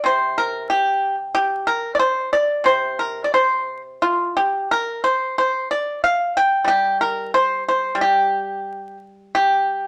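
This Chinese traditional piece for solo plucked strings is elegant and contemplative, moving at around 91 BPM in 2/4 with uneven, rubato beats in the G yu mode. A lone pipa, played with fingerpicks, sits up front with a dry, percussive attack, ranging from C3 to G5 across the 9.9-second fragment cut from a longer work. A moderate large-studio reverb surrounds the performance, and a vinyl crackle lends it an aged patina.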